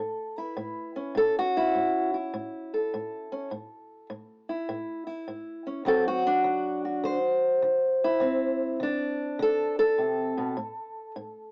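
Swaggering and soulful, this brief cut from a longer acoustic country blues piece features a lone fingerpicked ladder-braced guitar, dark, woody and boxy with old strings, sitting up front in a swung 4/4 feel as it moves from A to D7 before the chords fall away at 10.6 seconds, all heard through light reverb and a worn, warbling cassette tape sound with pitch drift and a small-speaker character.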